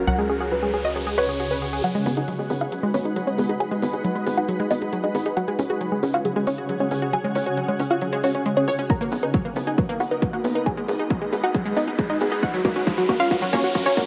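This bittersweet, emotional uplifting trance excerpt opens with a lush, detuned unison pluck melody and a dark baby grand piano line with tape echo, over a shimmering, ethereal pad, a tight, nasal sequencer bass and an electronic riser, while a second punchy unison pluck plays arpeggios with delay and sidechain pumping; smooth, overdriven hi-hats enter at 1.8 s as a filter sweep on the pluck drives the build-up, and a heavy, layered, up-front kick arrives with a drum fill at 8.9 s before the riser returns at 10.6 s.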